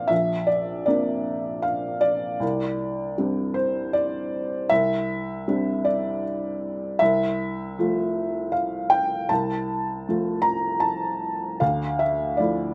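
A dry, close, outdoor-sounding recording carries a hushed, hopeful neoclassical minimalist piece in F major at 78 BPM in a rubato 3/4, played solo on a felt-muted upright piano whose soft, mellow, boxy tone sits up front with audible action noise, moving from Bbadd9 through Csus2 and F/C to Dmadd9 across this peaceful 12.7-second excerpt from a longer work.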